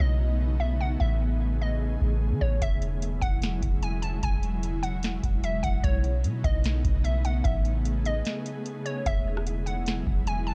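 A dreamy, blissful cloud-rap excerpt opens with a glassy, crystalline wavetable pluck carrying the melody through chorus, a low-pass filter and tape echo, over an airy, warbling pad with ensemble chorus, reverb and sidechain pumping, and a round, dark 808-style bass sitting up front. At 2.6 seconds a booming analog drum machine enters in a half-time feel, with a deep kick, tonal snare, rim click and metallic hats, as the harmony drifts through B9, Amaj9 and E69 before a short break at 8.3 seconds. The whole piece has a gritty, cassette-tape hardware character set in digital ambience.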